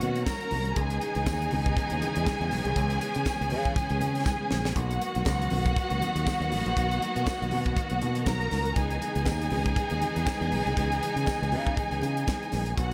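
Joyful and celebratory, this short disco excerpt moves at 120 BPM in 4/4 with a light swing on the sixteenths, cut from a longer piece. A tight funk drum kit anchors the groove with a high-tuned snare, a tight kick and hi-hat, its sound dry, airy and polished, and a drum fill arrives at 4.3 seconds. Beneath it a fingered electric bass sits up front, bright and growly with a direct, amped edge. A dark violin section carries a second line with expressive vibrato, lush and bowed, while a clear string section holds smooth, even sustained chords from a distant position. Very quiet congas with soft hands and a ringing tone add color, joined by a jingly tambourine in the background from 0.3 seconds, all over a harmony that moves between Bmaj7 and C#m9 in light reverb.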